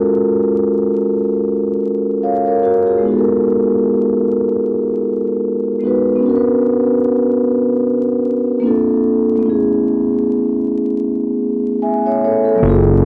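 A swung sixteenth-note feel at 75 BPM in 4/4 sets a relaxed hip hop groove in this dreamy, mellow excerpt from a longer piece. For most of its length a soft-mallet vibraphone carries the accompaniment alone, its metallic, ringing tone sitting up front with a cassette-tape colour, played with the motor off. The harmony moves from F#maj9 to G#m9 at 3.0 seconds, then through Bmadd9, A#maj9 and Amaj9. A fat, thick analog bass with tube saturation and a detuned sawtooth filter pluck arrives at 12.6 seconds. A very quiet, deep and moody pad with chorus follows at 12.9 seconds. The home-cassette sound carries vinyl crackle and a moderate studio reverb, giving the whole a hazy, intimate character.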